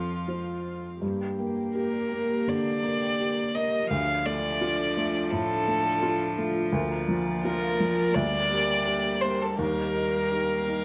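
Rubato in four, this fragile, melancholic neoclassical piano-and-strings fragment, cut from a longer piece, sets an intimate, airy-bowed sul tasto violin melody with light vibrato up front over a distant, floating cello second line and a felt-muted upright piano whose mellow accompaniment carries audible action noise, while a rich chamber string section holds soft sustained chords in the background and a round, soft-mallet marimba joins at 1.0 seconds with tape-echoed arpeggios, set in a lightly reverberant room.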